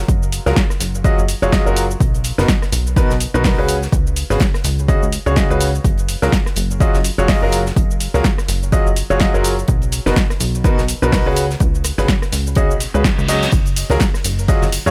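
A bright baby grand piano sits up front with a brilliant, open riff, pumping against the sidechain and trailing dub echo over F#maj9, Bmaj7 and C#7sus4 chords in this joyful, euphoric piano house cut from a longer piece. Beneath it, a plucky, funky analog bass pumps alongside an overdriven, punchy electronic kick and a dry analog drum machine with cabasa, hi-hat, ride, rim click and snare, while a tight funk kit with a high-tuned snare adds airy polish in the background. A reverse cymbal enters at 12.8 s, and from 13.5 s very quiet tambourine and congas join as the harmony settles on F#maj7sus2.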